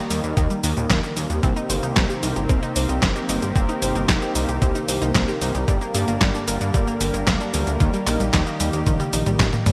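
Italo disco at 113 BPM in a straight 4/4, this danceable, melodramatic passage is cut from a longer piece and tuned slightly flat, with A4 at 437 Hz. A detuned 8-bit digital drum machine sits up front with cabasa, handclaps, hi-hat, toms and a medium-tuned snare, joined at 0.4 seconds by a thumpy, sampler-style electronic kick, both tape-warm and re-recorded in a small room, before a drum fill from 8.9 seconds. A glossy, evolving chorused synth bass built from pulse and sawtooth waves with filter sweeps and tube saturation anchors the low end. In the background, a lush, thick unison pad holds bright sustained chords with a slow attack, dark, full-bodied synth brass punches out stabs with vibrato, chorus, cassette-tape coloring and delay, and a round analog pluck runs arpeggios through phaser and delay. The harmony moves from Eb to Cm7, Gm and back to Eb, all set in a moderate hall reverb with bright 1980s-style digital production.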